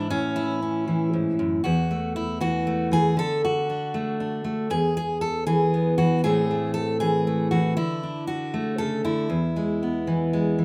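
A dry outdoor sound frames this brief, nostalgic folk excerpt, a gentle solo on fingerpicked steel-string jumbo acoustic guitar with bright, fresh strings and a full-bodied, up-front tone, moving in a straight 3/4 at 117 BPM in E mixolydian through A, Esus4, D, E, Am, D and back to E across its 10.6 seconds.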